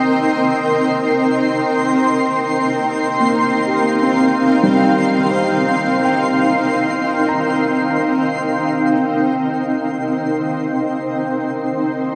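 In free time, this serene, luminous ambient excerpt rests on a Cm7 chord, with a cloudy, detuned granular pad sustaining up front alongside a twinkling, octave-up shimmer of granular texture, both bathed in their own reverb, while a soft, felt-muted upright piano plays intimate arpeggios through tape echo and a calm, very quiet organ-like drone holds C4, the piano and drone both stopping around 9 seconds as the pad and sparkle carry on in a huge, wet room with a dark top end.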